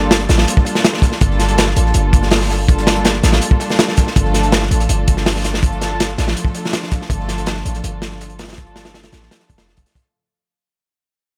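A crunchy, gritty, mid-forward breakbeat kit sits up front in this frenetic, atmospheric drum and bass and jungle excerpt at 163 BPM, its tight kick, hi-hat and medium-tuned snare saturated and rolled off on top, while a very quiet, dry soul kit adds a smooth, dark second layer of hi-hat and snare. Underneath, a deep, boomy 808-style bass with tube saturation and a noise layer delivers fast-attack, decaying sine notes, as a woody, bowed string section holds soft-attack chords with light vibrato. The cut is a drop throughout, moving from Gm9 to Dm/G at 4.2 seconds, where a fade-out begins and runs to the end at 10.0 seconds in a close, nearly reverb-free mix.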